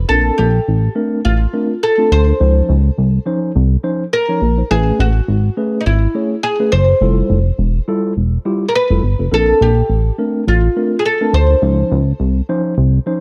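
This early-eighties boogie funk cut at 104 BPM in 4/4 has a light swing on the sixteenths and a smooth, danceable feel. An oud carries the melody up front, its woody, plectrum-plucked double strings given a slapback echo, until it drops out at 12.5 seconds. Beneath it, a chorused synth bass lays down a dark, glossy, retro low end built from pulse and sawtooth tones, with a fast attack and sustained notes. A mellow tine electric piano enters at 0.1 seconds and carries clean accompaniment through to the end at 13.2 seconds, sounding as if heard through built-in speakers. The harmony moves through the major-ninth chords Bbmaj9, Dbmaj9, Amaj9 and Fmaj9 before returning to Bbmaj9 and Dbmaj9, set in a small room ambience.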